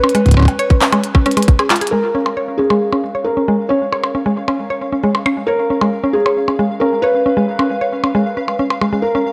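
A woody, bright mallet-like synth pluck spins chorused, delayed arpeggios up front through this eerie, glitchy IDM excerpt at 135 BPM, over a thick-felt upright piano whose dark, intimate melody carries 12-bit sampler grit and dub echo, a delayed glitchy drum kit of clicky hats, handclaps and percussion blips, a tight electronic kick heard only from 0.3 to 1.6 seconds before a drum fill at 1.7 seconds, and a faint, detuned pulsing gated texture that enters at 1.9 seconds, all moving from Db to Db7 in an echo-heavy chamber mix tuned to A4 = 437 Hz.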